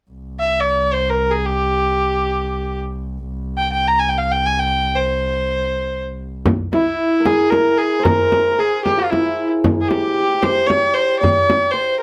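In free, unmetered time, this passage from a longer Persian modal ensemble piece unfolds with a passionate, stately bearing. A rich, boxy double bass, bowed by a single player with smooth, even vibrato, holds a low drone from the opening until 6.5 seconds. Over it, an earthy kamancheh carries the melody up front, its bowed line clear and sung with light vibrato and portamento, continuing through to the end. At 6.5 seconds a close, dry frame drum enters, and at 6.7 seconds a hammered santur joins with a shimmering, ringing second line. A moderate studio ambience surrounds the players, giving the acoustic ensemble a natural sense of space.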